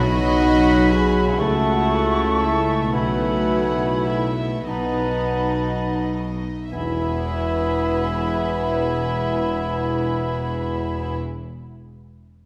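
Heard in a reverberant concert hall, this brief cut from a tender, slow romantic orchestral movement in E major drifts in a rubato 6/8 at roughly 28-43 BPM, slowing over its first 6.7 seconds as the harmony moves from B through A/C# and E/B to B7 before settling on E. Soft, floating sul tasto violins carry the melody, while a second violin line, a distant metallic flute with vibrato, a roomy oboe and a smooth background clarinet weave the upper lines. Beneath them, a mellow bassoon and rich violas accompany, a dark French horn section holds sustained chords, a very quiet harp rings out fingerpicked arpeggios, and tuba, cellos and distant double basses anchor the bass.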